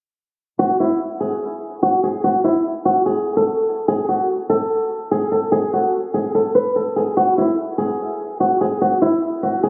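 Hip hop at 146 BPM with a brooding, eerie half-time feel in G# phrygian, this short excerpt features an up-front acoustic flamenco guitar carrying a dark, boxy, thumb-plucked melody with audible finger squeak and tape echo from 0.6 to 9.7 seconds, set in a lush hall reverb and captured on a phone amid muffled, low-pass-filtered club ambience.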